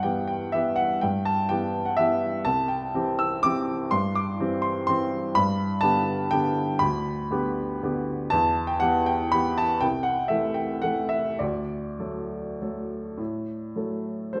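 A solo upright piano opens on an Em/G chord, setting out a classical waltz in 3/4 in G major with an elegant, sparkling mood. The tempo moves freely between 99 and 132 BPM, and the rubato lets the phrases breathe as the harmony travels through C, G and Em. The piano's tone is woody and natural, sitting up front with a long sustain that lets each chord ring. Its range stretches from C2 up to E6, giving the texture both a grounded bass and a high upper register. A moderate recital hall reverb surrounds the instrument, and the passage moves through Am/C before arriving on D at 11.4 seconds, ending at 14.4 seconds as a cut from a longer piece.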